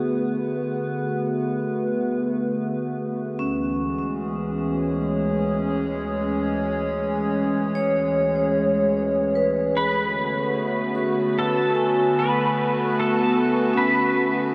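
A warbly, nostalgic tape-like pad holds mellow, detuned sustained chords from D to C#m/D to D6 in this peaceful, serene ambient excerpt at 75 BPM in D lydian, while a bright, metallic vibraphone struck with hard mallets rings out airy arpeggios through delay, and a clean electric pedal steel guitar with slide enters at 9.8 seconds to carry a short melody, the dreamy mix soaked in a huge reverb.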